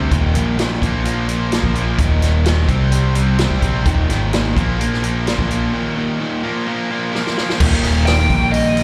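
A straight 4/4 pulse at 128 BPM drives this confident, swaggering classic rock clip in Eb major, cut from a longer piece and heard as a live gig through a club PA with light reverb and small room ambience. Two cranked stack guitars carry the riff from the first moment, both bright and overdriven with a picked attack, one of them thickened by slapback echo. Underneath, a growling fingered electric bass sits up front with its own overdrive, while a vintage acoustic kit with a punchy kick, medium-tuned snare and rolled-off top joins at 0.1 seconds with crash, hi-hat, kick and snare. The chords move between Eb and Bb with a turn to C, then a break opens at 5.7 seconds and a drum fill leads into a new section at 7.6 seconds. Just before the end, at 8.1 seconds, a dark, smooth lead guitar enters up high, between Eb5 and G5, overdriven and touched with slapback echo.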